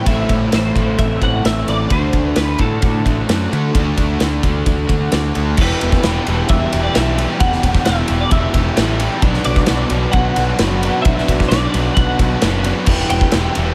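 A hazy, dreamy shoegaze and dream pop rock excerpt in E minor at 131 BPM in a straight 4/4 opens with a bright, twangy, compressed twelve-string electric guitar melody, dressed in ensemble chorus and slapback echo, over a background of three overdriven picked guitar riffs: a crunchy one trailed by reverse reverb, one with subtle chorus, and one double-tracked. At 0.1 s a punchy, fuzz-drenched picked bass and a loose acoustic indie kit join up front, the kit's pumping small-room sound pairing dark cymbals with a tight kick and medium-tuned snare. The chords move from Am to D, then at 5.6 s shift to Em and Bm before settling back on Em.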